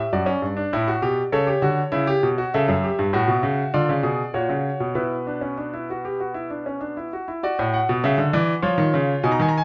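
A clear, up-front concert grand piano rings with natural tone, deep bass and long sustain inside light reverb, in this short cut from a longer piece. The baroque-style three-part fugue feels solemn yet driving in a straight 4/4, with the solo piano spanning F#2 to A#5 from 0.0 to 9.6 seconds. A new section begins at 7.4 seconds, moving through rootless minor harmony toward a dominant seventh chord.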